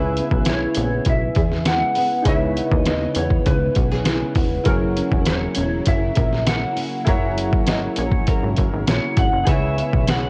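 A hazy, wistful stretch of bedroom-flavoured indie pop in C# dorian, moving at 100 BPM in a straight 4/4 and cut from a longer piece. An electric slide guitar carries the melody with a slightly broken-up, compressed tone bathed in lush chorus, while a dark, fingerpicked nylon-string guitar accompanies with its own lush chorus and vibrato effect. Round, detuned analog keys with filter sweeps and a cassette-tape tint add fast-attack, decaying accompaniment, and a very quiet string machine of violas holds mellow, slow-attack chords underneath. A punchy, funky analog bass with ring-modulated bite and a trip hop sampler-style kit, pitched down and muffled with a thumpy kick and sitting up front, give the groove its weight. The harmony rests on C#m7, shifts to F#7 at 4.7 seconds and returns at 9.5 seconds, all wrapped in moderate spring reverb and the worn, warbling pitch drift of old tape.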